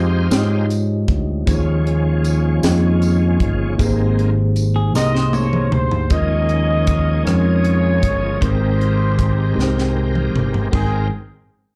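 In a straight 6/8 at 52 BPM, this slow, soulful and hopeful gospel passage in Ab major moves through Fm9, Eb9sus4 and Abmaj9. A shouting, lightly overdriven tonewheel organ with key click, chorus vibrato and slow rotary speaker takes a solo over mellow tine electric piano, a punchy, up-front fingered bass, a crisp fusion kit with a high-tuned snare, and jingly tambourine that drops out at 5.7 s. A picked, compressed clean guitar with phaser and slapback echo adds a brief second line, the vintage horn section carries the melody with light vibrato from 5.0 s, and drum fills plus an electric piano fill at 9.6 s mark the turns, all heard through a club PA with little reverb.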